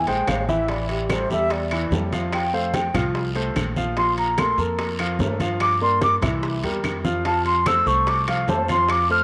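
A straight, danceable 4/4 groove drives this sunny Afro-Cuban jazz excerpt, built from thick-skinned, low-tuned congas in the background, tight, very quiet bongos, ringing, distant timbales, woody claves and a raspy, saturated guiro. Over it a breathy, mellow concert flute carries an expressive solo with vibrato and a crisp attack from 0.0 seconds onward, while a warm, up-front grand piano supplies polished accompaniment and a thumpy, bright pizzicato upright bass holds the low end. A moderate plate reverb gives the mix a sense of space.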